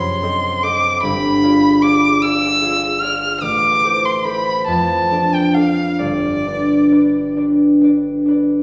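A wet recital-hall reverb surrounds this short excerpt from a longer piece, heard from further back in the room, as a romantic classical duo for violin and harp unfolds in a lyrical, tender 6/8 at a rubato 44-51 BPM. A single dark, woody violin sings the melody up front with vibrato, ranging from D5 to F6. The mellow, ringing concert harp accompanies with fingerpicked chords through F#dim7, G7b9, Am, Dm/F and G, and the violin stops at 7.4 seconds while the harp continues until 8.6 seconds.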